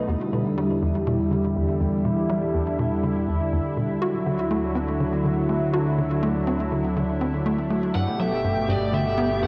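A lush, detuned unison pad and a fat analog bass open this hypnotic excerpt of ambient, sequencer-driven space music at 122 BPM, the pad's chorus, cassette-tape wear and shimmer reverb holding sustained chords through Em7, Dadd9 and Gadd9. A punchy, nasal sequencer bass drives a plucked riff from 0.1 seconds, its tape-coloured tone trailed by delay. At 8.0 seconds, a dark, overdriven electric lead guitar from a small cranked amp steps up front with a short melody in shimmer and delay, all inside a wet spring-reverb space with the expansive feel of a home cassette recording.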